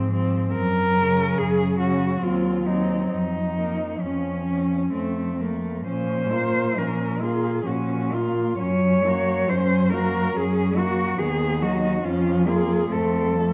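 Bathed in a wet recital-hall reverb, this elegiac, melancholic excerpt of a lyrical classical piece for cello ensemble unfolds in a rubato 3/4 at 62-72 BPM in Bb minor, with four dark, bowed cellos playing con sordino throughout: an up-front melody with vibrato and a smooth top, a distant second line with light vibrato and portamento, a soft-attacked accompaniment, and a nasal, veiled bass that also sits forward, all moving over harmony that circles Bbm, Gb and F.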